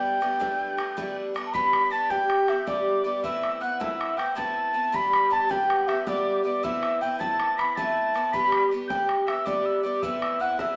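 A straight slip jig in 9/8 gives this short, cheerful Celtic folk clip its lively bounce. It is cut from a longer piece. A distant, hollow baroque flute carries the melody with tongued notes and vibrato. Above it, a wooden whistle adds a second line with a crisp, chiffy attack and rolled-off highs, while a very quiet concert harp rings softly alongside the flute. Up front, a bright, shimmering twelve-string acoustic guitar supplies the picked accompaniment, its octave-doubled strings sounding boxy with the odd finger squeak. A damped, tight bodhran keeps the pulse, and the chords move between G and A-based colours after a brief opening phrase that gives way at 1.5 seconds. The band sounds as if it is playing live in a stone room with moderate reverb, heard through a small speaker.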